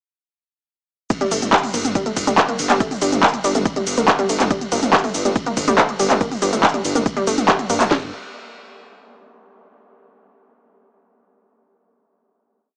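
A straight four-on-the-floor kick at 141 BPM drives this hypnotic, industrial peak-time techno piece in G minor, where from 1.1 seconds one overdriven drum kit pairs its heavy kick with a cracking snare and handclaps, while a second, up-front kit adds smooth programmed hats, shaker, ride, claps and mid toms that pump under sidechain; a dark detuned sawtooth bass rumbles in a galloping sixteenth-note line with tube saturation, and a round, nasal analog pluck with chorus and analog delay repeats a 7-step loop that drifts against the bar over a single G minor chord until the drop gives way at 7.9 seconds, all heard through a dry, gritty cassette and small-speaker sound.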